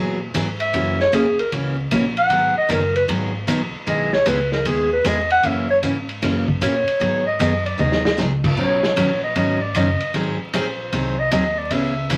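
Bright, full-bodied picked acoustic guitar and a woody pizzicato upright bass open this cheerful, down-home western swing fragment at a swung 153 BPM, with a muffled, lo-fi vintage drum kit of dark cymbals and punchy kick joining at 0.3 seconds. A breathy, mellow clarinet enters at 0.6 seconds and takes an up-front jazz-style solo with light vibrato over chords moving through Eadd9, F#7 and G#m7, while the drums add a short fill at 7.8 seconds. Wet studio reverb and a layer of vinyl crackle give the whole cut an old-record feel.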